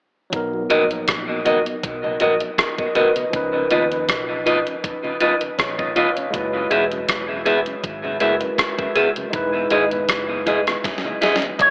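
A lightly swung groove from a crisp, thumpy-kicked 8-bit drum machine carries this sweet, smooth lovers rock reggae cut from a longer piece, with twangy, slightly broken-up guitar stabs up front and a bright tine electric piano both trailing dub echo, a dark, foam-muted bass in the background, a very quiet mellow organ on slow rotary speaker, and very quiet low-tuned congas, all under a wet spring reverb and AM radio tone, before a drum fill at 10.8 seconds and a brief envelope-filtered guitar note at 11.6 seconds.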